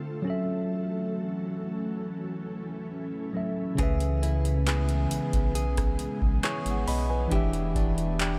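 A worn, slightly out-of-tune tine electric piano opens this longing, late-night contemporary R&B fragment in C# minor at 68 BPM over an ethereal, airy pad with ensemble chorus; at 3.8 seconds a booming analog drum machine with deep kick, handclaps, rim click and metallic hats arrives alongside a round sub bass and a bright, direct clean electric guitar playing arpeggios through tape echo, while a very quiet, bell-like celesta glints from 4.2 seconds, the whole dreamy mix soaked in huge ambient reverb.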